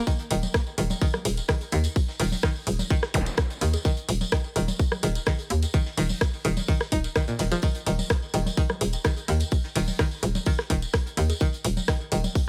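A hollow, bouncy FM bass sits up front with a punchy, knocking attack and sidechain pumping, anchoring this cool, sparse minimal techno excerpt at 127 BPM in 4/4 alongside a tight, tape-warm electronic kick. A twangy, string-like resonator pluck riff, bright with chorus, phaser, cassette tape and delay, weaves over a layered garage kit of hi-hat and rim click and a jingly vintage tambourine, while a rolled-off soul kit with fat snare and tape-warm congas and bongos with digital delay stay in the background of the small room. A brief electronic zap flickers in at 3.1 seconds.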